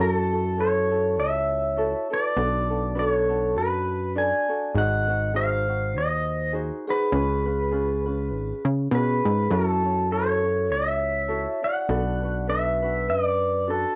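A twangy, up-front electric pedal steel guitar carries the melody with fingerpicks, slide and volume swells, while a mellow, dark vibraphone played with soft mallets and its motor off adds a ringing second line beneath it. A light, thumb-plucked acoustic ukulele provides the accompaniment, and a punchy, funky analog bass with a fast-attack, decaying filter pluck sits up front through this short, languid and sunny Hawaiian passage in F# minor at 101 BPM with a swung 4/4 feel. The steel, vibraphone and ukulele carry cassette-tape color and plate reverb within a wet small-room ambience, giving the piece a warm home-recorded character as it moves from F#m7 through Bm7, G#7 and C#7.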